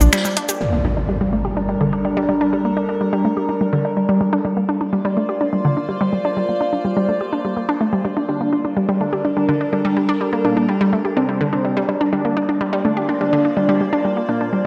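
A straight 4/4 pulse at 125 BPM opens this dark, dramatic melodic techno excerpt in G minor, where a layered, overdriven deep house kit of finger snaps, hi-hat and shaker sounds only until 0.6 s, when an electronic impact takes over, while a bright, punchy detuned sawtooth pluck runs tape-echoed arpeggios under a filter sweep and an evolving, morphing wavetable pad with chorus, phaser and slow attack holds sustained chords moving between Bb and Gm, until a thick, bold unison lead with sub octave and vibrato enters at 8.3 s to carry the melody, all bathed in a dreamy plate reverb.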